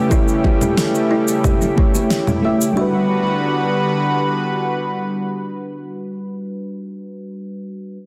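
Smooth and relaxed, this short sunset chillout fragment, cut from a longer piece, drifts over a straight four-beat pulse and moves from an A7 chord to Gmaj7 at 2.8 seconds. A round, warbling FM electric piano carries the accompaniment up front with chorus and digital delay. Alongside it, a thick, airy pad of detuned sawtooth and square-wave voices holds sustained chords until 6.2 seconds. In the background, a woody kalimba rings out soft arpeggios through a low-pass filter and delay, with a filter sweep running across its opening seconds. The drums are brief and electronic: a deep, tape-touched kick sits close and prominent, a layered kit of cabasa, congas and a fat snare joins it, and a very quiet, high-tuned acoustic conga adds a thin, vintage edge. A lush hall reverb spreads over the dense, heavily limited modern master.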